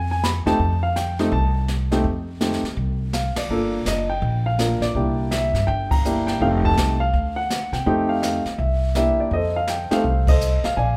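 This excerpt opens with a grand piano carrying the melody, up front and polished, ranging from A3 to B5 in a relaxed, sophisticated jazz piano trio moving at 165 BPM in 4/4 with a swing feel on the eighths. Beneath it, a pizzicato upright bass with gut strings sounds woody and thumpy, sitting close in the mix from F1 to C3. A brushed drum kit joins at 0.2 seconds, airy and acoustic, with dark cymbals, a medium-tuned snare and a boomy kick, adding hi-hat, ride and crash colors. The harmony circles F mixolydian, passing through Gm7, C7, F7 and a D7#9 before settling back on F7 as the form repeats at 9.3 seconds. The trio hits shared accents at 3.3, 5.9 and 10.2 seconds, and a moderate recital hall reverb gives the whole performance a spacious, church-like resonance.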